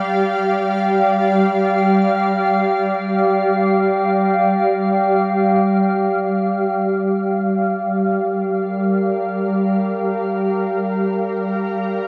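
A shimmering, detuned pad of sustained chords with chorus and slow attack opens this reflective, melancholic ambient excerpt in free time and G minor alongside a pure, beating glass harmonica tone in the background that stops at 6.0 seconds, after which the pad shifts from Dm/G to Gm7 and carries on alone to 12.1 seconds within a huge, wet reverb.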